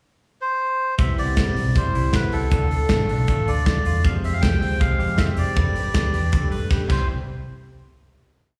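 A nasal, reedy melodica opens the piece alone at 0.4 s, playing hook-like motifs with a slapback echo, before the band arrives at 1.0 s for a breezy, youthful verse of jangly indie pop in C major at 157 BPM. An electric guitar through a small old amp strums slightly broken-up barre chords with lush chorus and slapback, while a direct-recorded clean guitar adds a bright, twangy fingerpicked roll in spring reverb. Beneath them, a dark, foam-muted picked bass carries a rounded line, and a punchy, polished studio kit drives a dance-floor beat with off-beat open hi-hats, its fill at 6.7 s leading from the Cmaj7, Dm, Fmadd9 and Gadd9 changes back to Cmaj7 and a final hit, with the mix heard like a live gig through a venue's PA.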